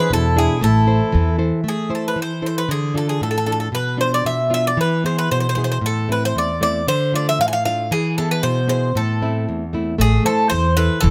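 Moody and bittersweet, this short Greek folk clip from a longer piece moves in a straight two-beat metre. The bright, metallic Greek bouzouki carries the melody throughout, its picked double strings, some doubled at the octave, sitting up front. A classical nylon-string guitar fingerpicks a warm accompaniment beneath it, while a reedy, boxy accordion adds a brief second line in the opening moments before dropping away at 1.4 seconds. The pizzicato upright bass gives a woody pulse at the start, falls silent, then returns at 10.0 seconds for the closing stretch. Recorded close and detailed with little reverb, the band circles through minor-key changes built around Am, Dm and E.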